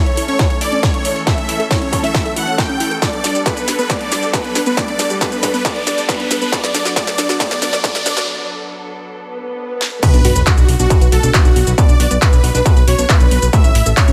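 The straight 4/4 pulse comes from a layered techno kit of cracking snare, handclaps, hi-hat, shaker and crash cymbal, soon joined by a distorted, overdriven electronic kick drum set up front, with drum fills running through the build-up. This driving, emotional uplifting trance excerpt is led by a huge, thick supersaw melody with vibrato, tape echo and sidechain pumping, while a punchy unison pluck plays bright arpeggios in the background through a phaser and a filter sweep. Dark, veiled con sordino strings hold bowed sustained chords beneath, and a very quiet riser, swell and sub drop add electronic lift to the climb. After a short break at 8.3 s, the drop lands at 10.0 s, where the strings fall away and a fat, detuned sawtooth bass enters with its own sidechain pumping. Light digital ambience lends the mix a polished, produced sheen.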